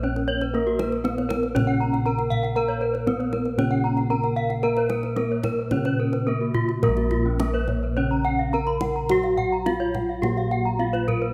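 Bossed bronze gongs carry the bass of this shimmering, hypnotic Balinese gamelan passage. Their round, beating tone sits up front with a boxy small-room warmth. Above them, a bronze metallophone plays the melody with a horn mallet, its bright, ringing voice showing the shimmering beats of paired tuning. Two more metallophones of the same bright, paired-tuned character spin arpeggios higher up. One of them reaches toward the top of the range. A lower metallophone struck with a wooden mallet supplies accompaniment from the background. The kendang enters at 0.2 seconds with tight, dry strokes from hard hands, driving a straight 4/4 pulse that moves between 106 and 119 BPM. The music is in Bb pelog and shifts into a new section at 6.8 seconds. A moderate recital hall reverb gives the whole ensemble a sense of space, and the passage is cut from a longer piece.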